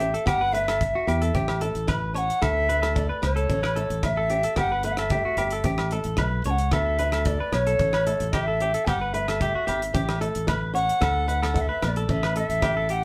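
A bright, airy wooden flute carries the tongued, expressive melody from the first moment of this joyful, carefree highlife guitar band excerpt at 112 BPM. It plays over a damped 70s drum kit with a tight kick, a punchy, growly fingered electric bass up front, and a clean, twangy electric guitar playing arpeggios, while a boxy picked acoustic guitar with audible finger squeak adds swing-style accompaniment in the background and ringing agogo bells enter at 0.3 seconds. The chords cycle through Emadd9/G, A7 and D5, with the band heard playing live in one room under moderate studio reverb.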